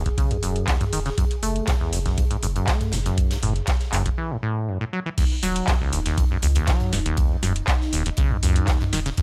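A detuned sawtooth pad with chorus opens in the background, holding sustained Ebm7 and Gbm chords while a squelchy, resonant acid bass riff plays up front with tube saturation and dub echo, its filter sweeping through the first 5.2 seconds. This trippy, hypnotic acid house cut moves at 120 BPM in a straight 4/4 in Eb minor pentatonic, taken from a longer piece. Beneath the acid line, a round analog bass with a nasal, filter-plucked tone anchors the low end, and the pad and both basses breathe with sidechain pumping. A dry, deep electronic kick drives the groove alongside a booming analog drum machine with a tonal snare, metallic hats, handclaps, toms and crash cymbal. In the background, a big rock drum kit adds hi-hat and a medium-tuned snare from a bright stone room, its hats and snare high-pass filtered. After a break from 4.2 to 5.2 seconds, the drop lands on Ebm7 and carries the mix, with little reverb, to the end.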